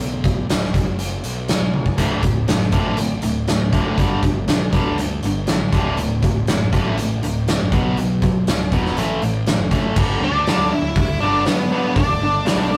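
A straight 4/4 classic rock groove at 120 BPM drives this sunny excerpt, with a big-room arena drum kit up front (punchy kick, medium-tuned snare, crashes, splashes and toms, plus a fill at 1.7 seconds) over a fuzzy overdriven picked bass, two bright overdriven picked guitars joining on the riff at 2.0 seconds through chords moving from Bm to D, G and A5, the quieter one dropping out at 10.0 seconds as a dark, up-front octave-fuzz lead guitar takes the melody over G5, all heard in a rough rehearsal-room recording with warm saturation and moderate reverb.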